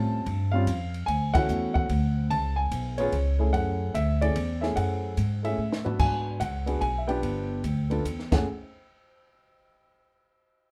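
Lightly reverberant, this moody, swinging jazz piano trio fragment in three features an up-front, natural baby grand carrying the melody over woody pizzicato upright bass on steel strings, with a dark, smooth cocktail drum kit of high-tuned snare and punchy kick joining at 0.3 seconds, a band accent at 1.3 seconds and a drum fill leading into a new section at 6.0 seconds.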